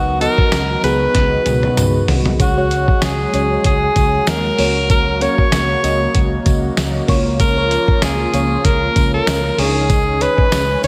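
Over a lightly swung groove from a muffled, compressed lo-fi sampler-style drum kit with a thumpy kick, entering at 0.2 s and playing a fill from 1.1 to 2.4 s, this uplifting, romantic 1980s-style pop excerpt pairs a bright, punchy alto saxophone melody up front with a dreamy, chorused and phased FM electric piano, a smooth, warbling analog pad in the background, a dark, round fretless bass, and a jingly tambourine, all bathed in a lush hall reverb that gives it a big arena sound over sus and slash chords on Db.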